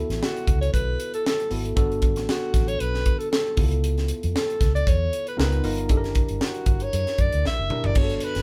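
Polished 1980s jazz-funk pop with an urban, glossy mood at 116 BPM and a light 16th-note swing, this excerpt sets a breathy, intimate alto saxophone melody with soft attack and vibrato up front over a worn, slightly out-of-tune tine electric piano, a dark, foam-muted fingered electric bass and a crisp fusion kit with a high-tuned snare and punchy kick, moving through rich jazz chords from D69 to F#7b9b13 before a drum fill at 7.4 seconds, all in one live room with light reverb.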